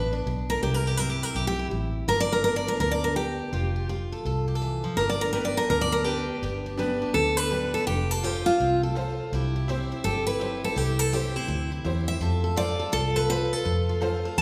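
Heard in the wet, lingering reverb of a recital hall or church, this sunny, down-home country piece swings along at 166 BPM in G mixolydian, with a bright, up-front picked dreadnought acoustic guitar taking a full-bodied solo melody over a second acoustic guitar's fresh-stringed picked accompaniment. Underneath, a vintage foam-muted fingered electric bass gives a dark, round, amped low end, and at 5.3 seconds a jangly, metallic tack piano joins in the background with a percussive vintage accompaniment. The short cut from a longer piece moves through G, C and F.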